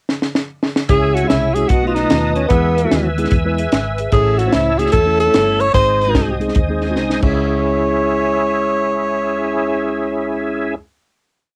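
Fervent and solemn, this short uptempo gospel piece in C# minor swings at 148 BPM as a tight, dry funk kit with a high-tuned snare drives a two-beat praise groove until 7.3 seconds, while a breathy, close-miked tenor saxophone with a cassette-tape tint sings scooped, hook-based phrases up front over a mellow tine electric piano's rhythmic chords and short fill at 3.5 seconds, a reedy tonewheel organ pad churning through fast rotary speaker and chorus vibrato with audible key click, and a dark, round hollow-body bass walking and running with slides and chromatic approach notes, all in a lightly reverberant home-cassette sound that ends on a final hit from 7.4 seconds.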